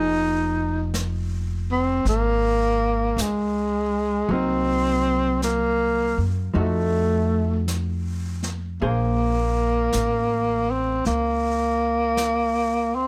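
Jazz ballad in a slow, swung 4/4, wistful and melancholic, cut from a longer piece. A breathy tenor saxophone carries the melody up front, its dark, whispered subtone sound marked by vibrato, scooped notes and a soft attack, and its intimate tone is set in plate reverb. Beneath it, a clean, fingered hollow-body electric guitar supplies compressed, shadowy accompaniment over a progression that moves from Fm7 through Cm7b5 and F7b9 to Bbm9. An upright bass, plucked on steel strings, gives a woody, growly low end. Brushed snare and hi-hat from a natural-sounding studio kit join at 0.9 s and stay low in the mix, while light reverb softens the whole room.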